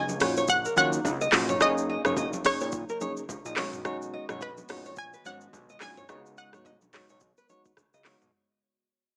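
A round, bright analog pluck sits up front and carries the melody, its detuned sawtooth tone thickened by chorus and trailed by tape echo. This mellow, hypnotic afrobeats fragment, cut from a longer piece, rides a swung sixteenth-note feel over an overdriven electronic afro-pop kit with a deep kick, metallic hi-hats, handclaps, rim clicks, shaker and toms. A fingerpicked nylon-string guitar adds a full-bodied riff with audible finger squeak and its own tape echo, while a worn, slightly out-of-tune electric piano plays clean accompaniment through a combo amp from 0.2 seconds. Underneath, a fat, detuned analog bass with a filter sweep anchors the low end, ringing congas sit in the background, and a hollow, airy, flute-like pad holds dark, very quiet chords. The harmony moves through Ebm7, Gb6, B6 and Db7sus4, with light reverb and a small-speaker sound over a fade-out that spans the full 8.3 seconds.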